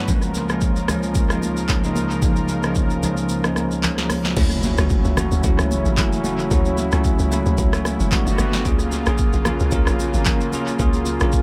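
An echo-heavy, lightly reverberant amapiano cut at 112 BPM with a relaxed, swung 16th feel opens on a bright, bell-like tine electric piano with tape echo over a smooth, detuned sawtooth pad with chorus, tremolo and sidechain pumping, joined by a punchy, up-front deep house kit and very quiet, close congas, until the kick drops out at 3.3 s and the drop lands at 4.4 s with a background impact and a hollow, bouncy log drum bass under chords moving from Dmaj9 to Gmaj7 and F#maj7.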